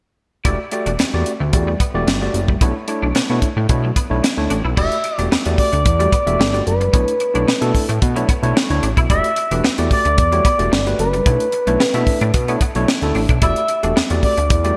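This slick, funky early-eighties boogie funk excerpt opens at 0.4 seconds with a barky, gritty overdriven tine electric piano heard through a combo amp, alongside a twangy, slightly broken-up electric guitar riff tucked in the background with ensemble chorus. A fat, detuned sawtooth analog bass with a filter sweep and a tight funk drum kit join almost at once, both sitting up front: the kit pairs a high-tuned snare and tight kick with bright cymbals and gated reverb. The groove moves at a straight 111 BPM in 4/4 in E dorian, alternating between Em11 and Bm11. At 4.8 seconds an expressive sawtooth synth lead enters with a soft attack, vibrato, chorus, digital delay and a moving notch, giving it a smooth, dark, evolving voice in a high register. A lush hall reverb and bright 1980s-style digital production frame the whole band until the clip ends at 14.8 seconds.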